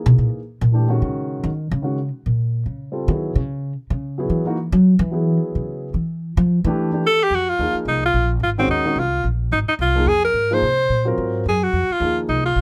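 The recording is dry and intimate, captured by close, detailed microphones that keep every part present. This is a spiritual, searching stretch of modal jazz cut from a longer piece, swinging in 4/4 at a brisk 218 BPM and centred in E-flat Phrygian. The opening belongs to the upright bass, whose woody, up-front pizzicato on steel strings carries a solo over the warm, deep-bassed concert grand piano as it comps through Ebm7, Dbm and Fmaj13/E. A bright alto saxophone enters at 7.1 seconds to take the melody, its playing punchy and forceful in a jazz style, with vibrato. Moments later, at 7.3 seconds, the music shifts up to F Phrygian on an Fm7 chord, with the saxophone and bass sitting at the front of the sound and the piano held further back.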